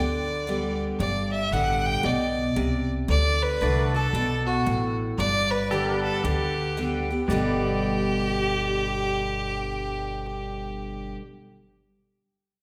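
Bathed in the lingering reverb of a church or concert hall, this easygoing, down-home honky-tonk country fragment swings gently as a focused fiddle with light vibrato carries the melody up front beside a bright, full-bodied picked jumbo acoustic guitar, while a woody, dark pizzicato upright bass holds the low end over a G to D and back to G progression and a clean, twangy pedal steel adds compressed volume swells in the background.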